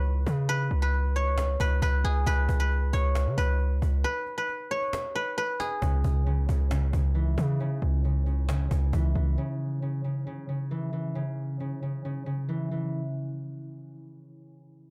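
A half-time 4/4 pulse drives this brooding, dark trap-leaning hip hop fragment from a longer piece, where a punchy, heavy sine 808 bass with a noise layer and a faint-snared woody cajon sit under a silvery, ringing guzheng played with fingerpicks, until a mellow concert harp enters at 5.8 seconds over a C#m chord and carries on alone after the bass stops at 9.4 seconds, all captured in a dry, gritty recording touched with studio reverb.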